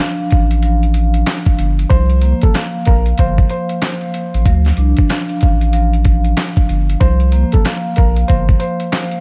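Dark, vinyl-crackled production frames this moody boom-bap hip-hop excerpt in D minor, rolling at 94 BPM with a 63% 16th-note swing. A gritty, compressed sampler-style kit with a thumpy kick, fat snare, hi-hat and handclaps sits up front beside a deep, saturated sine sub bass arriving at 0.3 s, while a mellow, cassette-toned vibraphone played with soft mallets rings underneath with slow motor vibrato. From 1.9 s a clear, woody upright piano carries a smooth melody through digital delay as the chords move between Dm and C7sus4.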